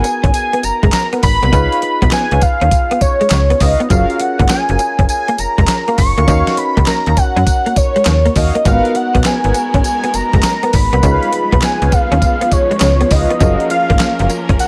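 A swung 4/4 groove at 101 BPM drives this punchy, confident new jack swing excerpt in G# dorian, built on a gritty, compressed sampler-style kit with a thumpy kick, fat snare, hi-hat, handclaps and tambourine, up front beside a snappy, metallic FM slap bass that enters at 0.2 seconds. A fat, detuned sawtooth analog lead with vibrato and a sub octave carries the melody on top, while a clean, direct-recorded electric guitar with ensemble chorus plays a picked riff and a dark baby grand piano and round, brassy synth stabs with a filter sweep sit in the background. At 8.7 seconds a smooth, bowed studio string section joins with sustained chords as the G#m9, C#7, F#maj7 and D#m9 progression comes back around to G#m9, C#7 and F#maj7, all in a dry, close sound.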